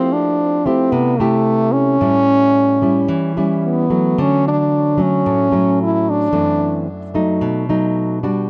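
Sophisticated and relaxed, this short bossa nova fragment sets a present, classical-style French horn melody, colored by tape echo and up front until 6.9 seconds, against a warm, thumb-plucked nylon-string guitar accompaniment that carries on alone to 8.5 seconds over chords moving from Fmaj9 through A7, Dmaj7 and F#m7b5 to B7, all captured in a dry, close 1970s-style studio sound with moderate booth ambience.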